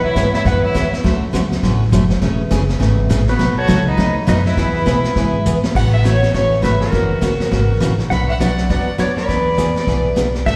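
Western swing country at 204 BPM in A major, cheerful and swinging, cut from a longer piece and heard as a live gig through the venue's PA with recital hall reverb. A woody, growly upright bass sits up front under a bright dreadnought acoustic guitar picking out the accompaniment with slapback echo, while a distant, roomy brush kit enters at 0.2 seconds and adds a drum fill at 5.5 seconds. The clean, compressed pedal steel carries the melody with fingerpicked slide and volume swells, joined by an earthy, lightly vibrato bowed fiddle on a second line, both sounding briefly at the start and returning at 3.3 seconds.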